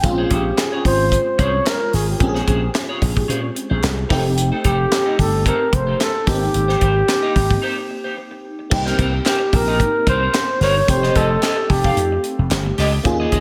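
A tight, up-front funk kit and a growly, punchy slap bass with an envelope filter set a swung 111 BPM groove in 4/4, with very quiet, crisp handclaps from 0.6 s, in this slick, nocturnal slice of polished 1980s jazz-funk pop in Bb dorian. A glassy, bell-like FM electric piano with ensemble chorus carries the Bbm9, F7 and Abmaj7 changes, while a clean, picked electric guitar with analog chorus plays a riff. A dark, smooth-topped flugelhorn with scooped notes and delay sings the jazz lead from 0.3 s. After a break at 7.6 s, the tune moves to Cm7 and F9, all bathed in a dreamy plate reverb.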